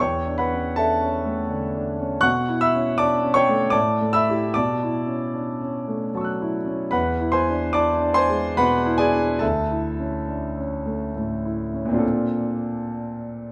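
A solo concert grand piano opens on a Dmaj9/E chord, setting a dreamy, hazy mood for this impressionist classical fragment, cut from a longer piece. The playing moves in 3/4 at roughly 68-82 BPM with a free, rubato feel. Centered in D major, the harmony drifts through Bm11, A9sus4 and E9 before settling on Dsus2, then turns toward a new passage at 12.0 seconds with a Bbmaj9 chord that carries through to the end at 13.5 seconds. Spanning D2 to F#6, the piano sounds clear and natural, with a deep bass and long sustain. Close, detailed microphones keep the instrument up front, while a moderate recital hall reverb, 1.5 seconds in length, surrounds it with a gentle sense of space.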